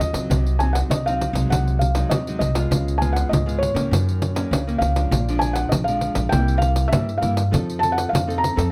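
A studio sound with moderate reverb frames this lively, bittersweet samba and choro excerpt, cut from a longer piece. A felt-muted upright piano carries the melody in a soft, dark voice, its thick felt giving short sustain and its action noise audible. Beneath it, a small nylon-string guitar adds fingerpicked accompaniment, while an upright bass with steel strings sits up front, plucked pizzicato with a woody, thumpy tone. The pandeiro is jingly, close and dry, played with hard hands and placed forward in the mix. All four parts play together from the start, moving through a chord progression from Cdim through Db7 and Gb6 toward C7 and F7.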